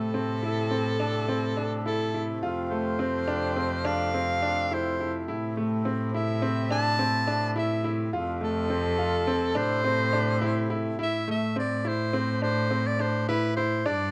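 An uneven 5/8 meter carries this urgent, pensive contemporary chamber piece, cut from a longer work, where a breathy, whispered soprano saxophone with vibrato sings the melody up front over clear piano arpeggios with audible action noise, a bowed gut-string cello holding the bass, and a nasal, dark harmonium sustaining chords in the background until it stops at 11.0 seconds, heard through close, detailed microphones within a recital hall's moderate reverb.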